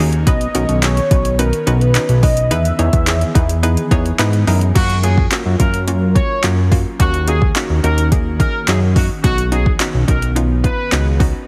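Heavily compressed with a radio-ready sheen and a touch of light reverb, this short cut from a longer dance-pop track feels euphoric and summery in a straight four-four. A fat, thick analog bass sits up front and pumps against the sidechain, while a smooth R&B drum kit of soft kick, hats, handclaps and crash carries an overdriven, small-room grit. A hollow, bouncy square pluck with chorus pumps through the accompaniment, and a very quiet, airy pad holds breathy sustained chords underneath. A velvety synth lead with vibrato, chorus and digital delay carries the opening melody until 3.6 seconds. At 4.8 seconds a clear, loosely played horn section with a smooth top and delay takes over the tune as the harmony moves through F#maj7, D#m7 and back to Badd9.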